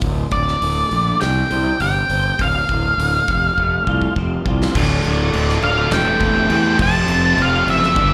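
This sounds like a live gig heard through a club's PA, with a dry, close feel and only a touch of room reverb. The excerpt is an angsty, dark slice of quiet-loud alternative rock in a straight four. It opens with a clean electric guitar playing mellow, chorus-and-delay-tinged arpeggios in the background, over a growly, overdriven fingered bass up front and a big acoustic drum kit with a punchy kick, fat snare and bright cymbals in a stony room. From 0.3 seconds a dark, octave-fuzz lead guitar carries the melody up front with distortion and slapback echo. After a drum fill, the music hits its louder half at 4.8 seconds, where the arpeggios stop and two double-tracked, distorted guitars take up a picked riff, the first slipping in just before at 4.7 seconds, one compressed and set back in the mix. Alongside them, a very quiet, muted chamber string section sustains veiled, bowed chords with vibrato and a soft attack.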